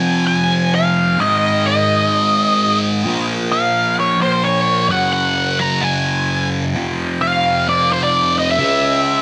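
A dark, octave-fuzz lead guitar with wah and analog delay carries the melody up front over a bright, double-tracked fuzz guitar riff swirling with phaser in this hypnotic, mysterious rock fragment, both distorted guitars sounding together throughout its 9.2 seconds in a light reverb.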